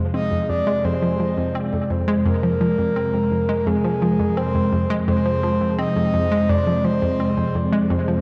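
A round, ring-modulated analog pluck drives this hypnotic piece of ambient, sequencer-based space music, repeating its riff with chorus and analog delay at 85 BPM in F dorian over a sustained F minor chord. Alongside it, a sweeping, resonant pad of detuned sawtooth tones holds evolving chords with a slow attack and long release, while a soft, breathy flute-like synth lead with vibrato and a cassette-tape tint sings a melody from 0.1 to 7.5 seconds. A wet spring reverb and heavy echo wrap this mysterious 8.2-second excerpt.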